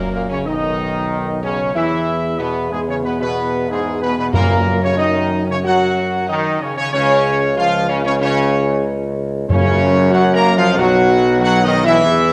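Classical brass at 93 BPM in F# major, majestic and triumphant, this excerpt from a longer piece has a dark, up-front trumpet section carrying the melody over sustained chords from a lightly vibrato French horn section and a smooth-topped trombone section, a warm tuba anchoring the bass, and close, dry timpani struck with medium mallets at 4.3 and 9.5 seconds, all set in a roomy recital hall.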